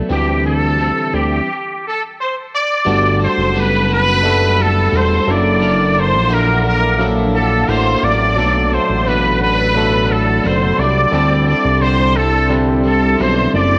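A straight, unhurried 4/4 pulse carries this dreamy, laid-back slice of indie and bedroom pop, halting in a brief stop between 1.5 and 2.9 seconds before the longer second section settles in. A fat, detuned analog bass sits up front beneath a barky tine electric piano, lightly overdriven and colored by cassette tape. Behind them, an electric guitar at the edge of break-up hangs back through lush chorus and vibrato. Carrying the melody almost from the start, a clear, punchy trumpet plays with scooped notes in a vintage pop style, thickened by an ensemble chorus. At 3.8 seconds a cloudy granular pad drifts in with its own reverb, holding blurred, evolving chords in the background. The harmony moves from D9sus4 through Gmaj9, F#7alt and Bm7, and the mix sits in a moderate echo-chamber reverb with a rolled-off top end.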